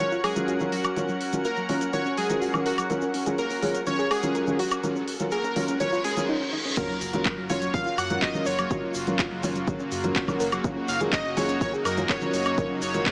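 A punchy, bright, detuned unison lead carries a catchy melody with tape echo and sidechain pumping through this hopeful, expansive progressive house piece in F# major at 124 BPM. It rests on a lush supersaw pad with a low-pass filter, gentle chorused arpeggios from a soft, round pluck with digital delay, and mellow felt-muted upright piano stabs, boxy with audible action noise, whose filter sweeps through the build-up, all pumping with the sidechain. Crisp hats, handclaps, woodblock and crash from a pop drum kit join a grainy egg shaker, a very quiet glassy harmonics texture until 6.3 seconds, and a faint riser, reverse cymbal and sub drop, before the drop at 6.8 seconds brings in a layered, tape-toned electronic kick and, at 7.0 seconds, a deep, dark analog bass, all set in a moderate hall reverb with a small-speaker sound.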